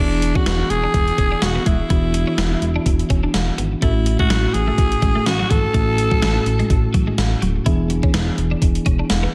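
An alto saxophone with a raspy, gritty edge carries the melody from the first moment, its bright tone colored by vibrato, scooped notes and tape echo, and it falls silent at 6.9 seconds. This short excerpt of nostalgic, uplifting 1980s-style pop moves at 125 BPM in 4/4 with a light swing on the sixteenths, centered in E mixolydian and moving from E7 to A6 and back to E7. Beneath the sax, a mellow tine electric piano heard through built-in speakers supplies clean accompaniment, while a twelve-string electric guitar sits in the background with a compressed, picked riff washed in analog chorus and tape echo. A glossy, dark chorused synth bass holds down the low end with a plucky, fast attack and sustained notes. From 0.2 seconds a thumpy digital drum machine pushes up front with hi-hat, kick and a gated reverb snare, its sampler-style sound given a tape-tinged, small-room character, and the whole mix sits in a light reverb.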